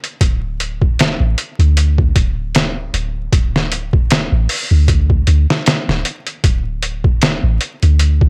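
A dry, gritty hardware recording sits under a bed of vinyl crackle and a touch of digital ambience in this short cut from a longer trip hop piece. At 77 BPM in 4/4, with a light swing on the sixteenths, the mood is hypnotic and melancholic. A sampler-style drum kit, compressed, pitched down and tape-warm, sits up front from the start, pairing a thumpy kick and a medium-tuned snare with hi-hat. At 0.2 seconds a soft 808-style bass joins, deep and round with a sine-like tone, a fast attack and a decaying tail, ranging from D1 to D2. Tube saturation lends the dark bass a little grit, and it sits up front beside the drums, the two parts carrying the groove together through the full 8.3 seconds.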